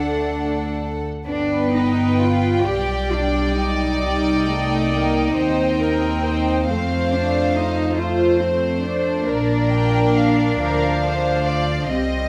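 A slow, rubato passage for string orchestra in 12/8, cut from a longer movement, opens with all five sections sounding together from the first moment. A dark, intimate violin section with light vibrato carries the yearning melody, while a second violin section floats a pure, symphonic line close beneath it. Violas fill the middle with soft, floating accompaniment, and up-front cellos join the shadowy double basses on the bass. Every section bows sul tasto with soft attacks, which gives the music a hushed, solemn veil, and a moderate scoring-stage reverb adds a gentle halo. The harmony moves from D through G7, Cm and F7 before settling on Bb at 9.3 seconds.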